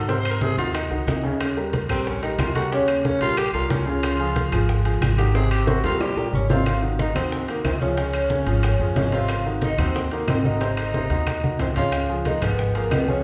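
A straight 4/4 groove at 182 BPM drives this sunny, sophisticated Afro-Cuban jazz passage in Ab major. Thick-skinned, low-tuned congas, tight high bongos, woody claves and ringing metal-shell timbales sit behind a thumpy pizzicato upright bass and a polished, present upright piano, while a raspy, growling tenor saxophone solos breathily until 6.7 seconds and a mellow vibraphone with soft mallets and motor vibrato carries the melody from 6.3 seconds, the band sounding live together in one large, reverberant studio room.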